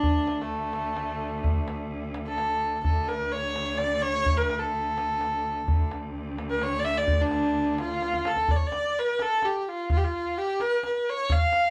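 An earthy, bowed kamancheh sits up front, carrying a longing melody in D avaz esfahan with light vibrato and portamento, in this excerpt from a hypnotic Persian modal ensemble piece at 85 BPM in a straight 6/8. Beneath it, a focused, bright cello holds a distant, bowed drone on D2 with vibrato until 8.5 s, while a tight, saturated tombak played with soft hands keeps time and adds a drum fill from 8.0 s into the closing section. The trio plays live together in a small room with a wet ambience.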